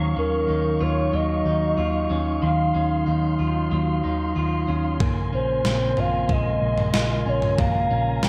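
A soft, hollow, woody clarinet-like synth lead with vibrato carries the melody over a mellow, key-clicking tonewheel organ on fast rotary speaker, a slightly broken-up electric guitar arpeggiating through lush chorus and digital delay, and a dark, round, foam-muted picked bass in this ethereal, haunting dream pop excerpt, whose Ebm9 harmony shifts to Bbm9 at 5.0 seconds just as a thumpy, overdriven 80s drum machine with a gated reverb snare enters, all set in a lush hall reverb.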